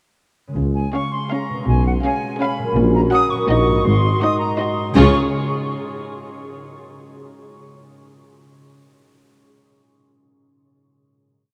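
This short, quirky, magical film cue in Db major at 164 BPM in 3/4 opens at 0.5 s with an up-front concert harp playing ringing, thumb-plucked rolled chords, soon joined by a dark cello section, a mellow solo tuba and a rich double bass section on the bass line. An airy small flute group carries a high second line, while sul tasto violin sections take the melody and another second line over viola accompaniment, the second violins and violas holding soft sustained chords that sit intimate and in the background. The ensemble sits in a vast cathedral reverb, moving from Db through Gb/Bb and Ab7 to a final Db chord at 5.0 s.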